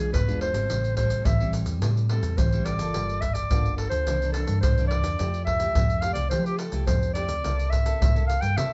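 Playful and festive, this short cut from a longer samba and choro piece in F major moves at a straight 107 BPM. A breathy, intimate clarinet carries the melody up front with vibrato and scooped notes over fingerpicked classical nylon-string guitar and a dark, round hollow-body electric bass, while tube shaker, deep surdo and pandeiro played with soft hands enter at 0.1 seconds. The band plays live in one room with a wet ambience and a soft, dulled top end, moving through chords from E7b9 and Am7 to Gm9, C9 and Fmaj9 before resting on C6.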